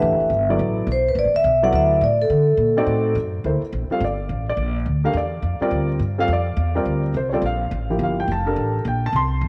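A moderate echo-chamber reverb gives this cut from a longer modal jazz piece a roomy, spiritual glow, its searching mood carried at a brisk 211 BPM in swung 4/4. Up front, a metallic, ringing vibraphone played with medium mallets and its motor off states the melody until 3.1 s, while a dark, slightly detuned upright piano with audible action noise accompanies through to 9.5 s. Beneath them, a thumpy, gut-string upright bass plucks the low line as the harmony settles into G dorian from 3.4 s, resting on Gm9 before moving to F.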